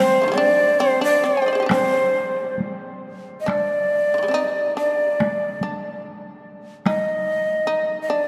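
Austere and solitary, this short excerpt of Japanese chamber music moves at a rubato pace around 66-74 BPM in a loose 2/4. A breathy, bright shakuhachi carries the melody in a narrow band from C5 to Eb5, its straight, tongued tone close-miked and placed up front. Beneath it, a plectrum-plucked shamisen plays a second line across a broad span from D3 to Ab5, its buzzing, percussive attack sounding powerful and warm. A taiko ensemble struck with hard sticks joins at 1.7 seconds and drops out at 7.0 seconds, giving the passage a firm, small-room punch. A long cathedral reverb of 5.1 seconds places the music in a vast, echoing space, and the piece shifts into a new section at 3.5 seconds before the cut at 8.3 seconds.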